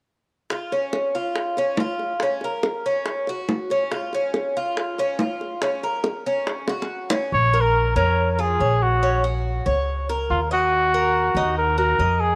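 A straight, danceable four-beat pulse drives this nostalgic slice of Cuban son and guajira, cut from a longer piece. From 0.5 seconds a picked Cuban tres rolls out arpeggios on its doubled, metallic strings, some sounding in octaves, while tight, high-tuned bongos struck with hard hands add a vintage, band-limited sound up front. A drum fill at 6.7 seconds ushers in the second section at 7.3 seconds, where the bongos drop away and the harmony turns toward minor chords. Here a warm, punchy solo trumpet takes the melody with vibrato and a pop-style delivery, and a pizzicato upright bass on steel strings adds a woody, dark, thumpy low end beneath the continuing tres. A moderate plate reverb lends the acoustic sound a lingering glow.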